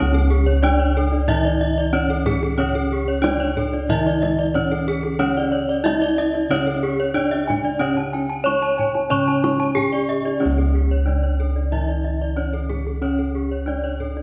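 Heard in a reverberant church or concert hall, this 14.2-second cut from a longer Balinese gamelan piece in C# pelog moves at 92 BPM in a straight 4/4 with a ceremonial, shimmering mood. Up front, a bright, horn-mallet bronze metallophone carries the melody, its paired tuning producing shimmering beats, while a darker, smoother metallophone supplies the low accompaniment. Two more ringing metallophones spin arpeggios above, bossed gongs anchor the bass with round, beating tones, and a tight kendang played with soft hands sits in the background.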